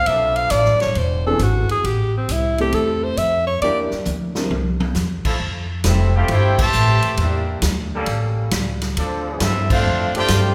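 This big band swing excerpt is cut from a longer piece, and its mood is swinging and brassy. A breathy alto saxophone opens with a subtone solo line, up front with vibrato, over a woody pizzicato upright bass and a swinging acoustic drum kit with a punchy kick, a medium-tuned snare, and hi-hat, ride, crash and toms. A clear trombone section holds tight sustained chords underneath, and a smooth, vintage grand piano comps briefly in the first half. The drums play a fill at 4.1 seconds, and the trumpet section takes over the melody at 5.9 seconds with a light vibrato and a soft attack. A mellow, distant second trombone section sings a second line beneath the trumpets, and the full band hits accents at 6.5 and 9.6 seconds. The whole performance sits in a reverberant hall that gives it a wet, spacious glow.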